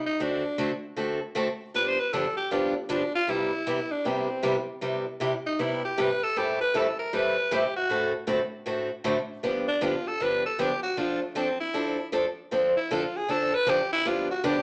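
Swinging and down-home, this country excerpt moves at 156 BPM in C major with swung eighths, as a raspy, growling tenor saxophone solos up front in a jazz style from 0.0 seconds over a bright, boxy picked parlour steel-string acoustic guitar that enters at 0.2 seconds, both set in a large studio's wet reverb across changes such as D7, G7, Cmaj7 and Am7.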